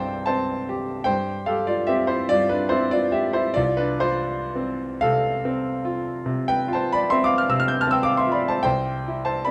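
A clear, smooth grand piano with a vintage character and short sustain sits up front in this dreamy, nostalgic romantic nocturne, played solo in C major and 12/8 with free rubato at roughly 38-54 BPM in dotted quarters, spanning C2 to G6 across a 9.5-second fragment of a longer piece, framed by light reverb and a dark, warm production.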